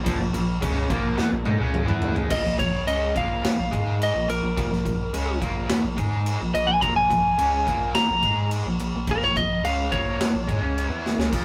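A cranked stack guitar with overdrive and harmonic tremolo and a picked, compressed distorted guitar riff open this heavy, aggressive hard rock excerpt together with a deep, smooth sine sub bass, and a big acoustic rock kit with a punchy kick and bright cymbals enters a moment later and plays a fill at 1.2 seconds. At 2.3 seconds the distorted guitar drops out as a dark, slightly broken-up lead guitar steps up front for a solo that runs to the end, with the distorted guitar returning briefly at 11.3 seconds. The rough rehearsal-room recording carries light reverb.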